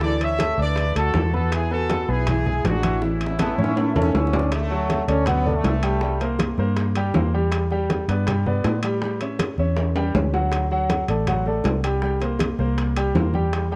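A punchy, round, dark electric bass sits up front in this festive, sunny salsa excerpt at 160 BPM in D major, alongside a polished baby grand piano and a clear horn section with light vibrato that carries the melody until 4.3 seconds, while a brilliant, tight trombone section adds a second line from 3.4 to 6.3 seconds. Soft, low-tuned congas, tight high-tuned bongos in the background and ringing metal-shell timbales drive the rhythm, with drum fills at 3.0 and 9.8 seconds as the chords move from Dadd9 through E7, C7 and Em7. The sound carries light reverb and the worn, warbling pitch drift of old cassette tape.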